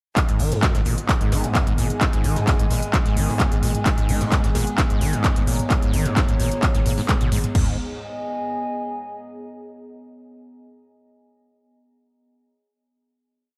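A driving peak-time techno drop in G# minor at 130 BPM kicks off at 0.2 s with a punchy analog drum machine hammering a four-on-the-floor kick with floor tom and crash, an overdriven techno kit of claps, hats and low tom, a very quiet, dark brush kit playing a looped breakbeat with edits, and a warbly, nostalgic lo-fi pad that pumps with the sidechain over slowly shifting chords. A squelchy, resonant acid bass riff with accents and slides and a growling 808-style bass rumbling between the kicks arrive almost at once, while an eerie, metallic drone hovers faintly beneath from 0.9 s. The relentless, hypnotic groove is soaked in lush hall reverb for a dreamy sheen, and the pad rings on through the final chord until 9.4 s, outlasting every other part.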